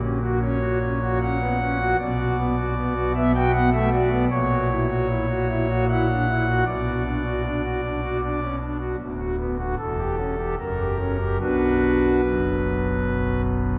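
Grave and solemn, this short classical excerpt is a chorale-style piece in B minor for solo pipe organ, cut from a longer work. Moving in 3/4 at around 76 BPM, it breathes with uneven beats and a rubato feel rather than a strict pulse. The organ speaks on its foundation stops in a thick, romantic voicing that sits up front, reaching from a deep D1 in the bass to G5 at the top. A long, wet cathedral reverb of about 5.1 seconds hangs around every chord, lending the sound a vast, resonant space. The harmony circles between F# and B minor before a closing turn through Bm/D, C#dim/E and F# resolves onto B minor at 11.4 seconds, just before the passage ends at 13.8 seconds.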